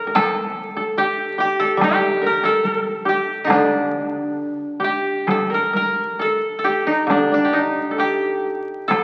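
Japanese traditional chamber music, austere and calm, moves in a rubato 2/4 at around 64-73 BPM in D miyako bushi, tuned to A4 = 438 Hz, in this short cut from a longer piece. Three fingerpicked kotos make up the core: a woody, up-front melody koto carries the tune over a softer second line in the same register and a mellow low accompaniment, while a taiko ensemble struck with heavy sticks enters at 0.2 s and the music moves into a new section at 5.3 s. The dry koto tones sit in a reverberant recital hall, all heard through the crackle of a very old 78 rpm record.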